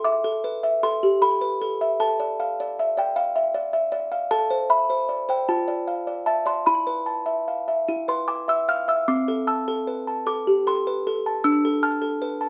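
Eerie and fragile, this short classical lullaby excerpt in A minor drifts at 51 BPM in a straight 6/8, carried entirely by a solo music box whose delicate, tinkling plucked tones, vintage and band-limited from a large box, sit up front with a slapback echo and light reverb, spanning C4 to F6 across a simple progression that moves from A5 and Dm/A through Esus4 and E before settling on Dm at 11.4 seconds.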